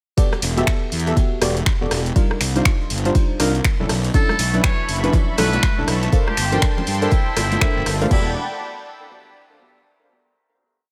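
Deep house at 121 BPM with a 16th-note swing, deep and smooth in mood, built on mellow, nasal chord stabs that pump against an overdriven four-on-the-floor kick and a layered drum kit of snaps, rim clicks, hi-hats and crash. A very quiet brushed kit plays a looped breakbeat, while a fuzzy, overdriven fingered electric bass playing off the beat fills out the low end. From 4.1 seconds a breathy trumpet with a metal mute plays a jazz-style repeating riff through tape echo over a detuned analog pad, and hand-played congas join in the background at 4.3 seconds. Em11, Cm11, Bm11 and Gm11 chords move as one shape in parallel before a rootless Em11 final chord at 8.1 seconds, all in a close, dry mix.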